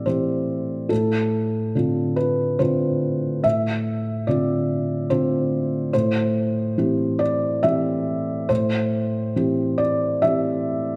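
A felt-muted upright piano plays alone throughout this brief, wistful fragment of neoclassical minimalist piano, its dark, thickly damped tone sitting up front with the soft clatter of its action clearly audible. In a loose, rubato three-beat feel, the harmony drifts from Am7 to Dm7/A at 0.9 seconds and settles back on Am7 at 5.9 seconds, spanning the low and middle registers. Light reverb leaves the sound natural and intimate, as if heard from beside the instrument.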